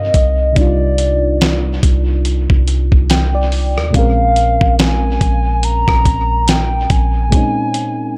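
Longing and sensual, this brief contemporary R&B excerpt moves at 71 BPM in C minor with a swung sixteenth-note feel, shifting from Cm9 to Bbm9 at 3.9 seconds. A hollow, woody synth lead with vibrato, chorus and dub echo carries the melody up front over a soft, round FM electric piano that adds a fill from 2.7 to 3.9 seconds, while a deep, boomy 808-style bass drops out at 7.3 seconds. A gritty, compressed sampler-style drum kit with a thumpy kick, fat snare, rim click and hi-hat sits close in a large room, and the whole mix is bathed in echo-heavy digital ambience.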